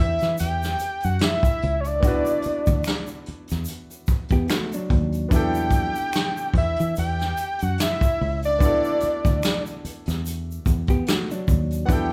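A fat, nasal analog lead with chorus carries the melody up front in this smooth, late-night neo-soul R&B excerpt, over a clear, short-sustained baby grand piano, a foam-muted fingered electric bass, a brushed vintage drum kit with a punchy kick and a rolled-off top, and a dry egg shaker and finger snaps tucked in the background, while a dark, clean hollow-body jazz guitar adds a second line at 4.3 and 10.9 seconds, all on a lightly swung sixteenth-note feel and a single Em9 chord, with the band playing live in one room under moderate large-studio reverb.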